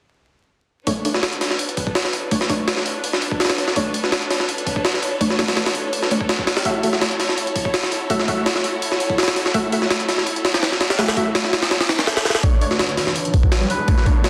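Gritty, pitched-up sampler drums with a thumpy kick and high-tuned snare sit up front in this raw, nostalgic jungle and drum and bass excerpt, as punchy, detuned sawtooth orchestra-hit stabs with dub echo move through a filter sweep over lush, vibrato-rich bowed strings held in the background on Bm9 and F#m7 chords, before an electronic riser builds from 12.8 s and a reedy, breathy melodica note appears at 13.7 s, the mix set in a wet echo-chamber reverb with vinyl crackle and a dense, heavily limited master.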